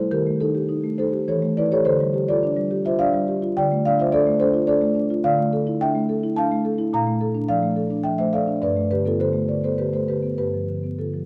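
Close, detailed miking with light reverb and a vinyl crackle frames this flowing, reflective 11.3-second excerpt of a contemporary classical piece for solo marimba, tuned to A4 = 436 Hz, where the woody, mellow, round tone of rosewood bars under soft mallets sits up front in a rubato 3/4, drifting from Eb and Emadd11 through Dm7, Dmadd9 and Bbmaj7 to settle on Gadd9 and G9.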